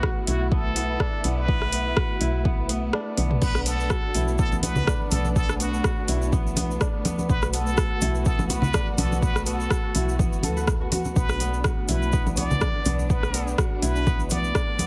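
Afro house at 124 BPM in B minor, this earthy, warm excerpt from a longer piece rides a swung sixteenth-note feel over a single Bm7 chord. A plunger-muted trumpet carries the jazz-style solo melody with a brilliant, wah-wah bite and a trail of delay, while a dark, lush studio string section holds bowed chords with vibrato beneath it. A mellow kora rings out fingerpicked arpeggios touched with delay, and both the strings and kora pump against the kick, as does the woody, round FM bass with its fast, decaying attack. Up front sits a deep, tape-warm electronic kick, joined by a layered deep house kit of metallic hats, rim clicks, toms and crash. The kick drops out briefly around 2.9 seconds as a drum fill hits at 3.2 seconds, then a grainy tube shaker enters at 3.4 seconds and hard-handed, close congas follow at 4.1 seconds. The whole mix has a heavily compressed, radio-like sound in a small room ambience.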